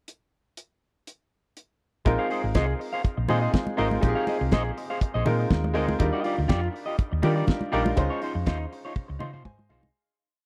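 A four-on-the-floor disco beat with open hats on the off-beats, from a damped 70s drum kit with a fat snare, plays a short pickup alone. At 2.1 seconds it is joined all at once by a round, hollow-body bass with a syncopated, sliding line, a slightly broken-up electric guitar chopping sixteenth notes through tube saturation and spring reverb, a clear baby grand pushing chords with grace notes and short fills, and bright, thin-skinned congas with a slap on two and open tones on four. It all makes a joyful, danceable pre-chorus with a close, dry 1970s-style sound that fades out from 8.0 seconds under a closing drum fill at 9.0 seconds.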